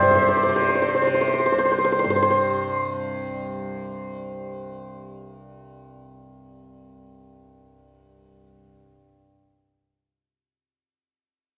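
Radiant and serene, this short fragment of Indian classical music, cut from a longer piece, moves in a straight five-beat metre. A hammered santur carries the melody up front, its bright, ringing strikes staying within a narrow upper range from C5 to E5. Beneath it, a softly plucked tanpura sustains a low, buzzing drone between C2 and C3, sitting well back in the balance. Both acoustic instruments share a shimmering quality, and a recital hall's reverb with a 1.5-second decay gives the sound a spacious, wet glow. The santur falls away at 4.9 seconds, and the tanpura drone carries on alone until 9.2 seconds.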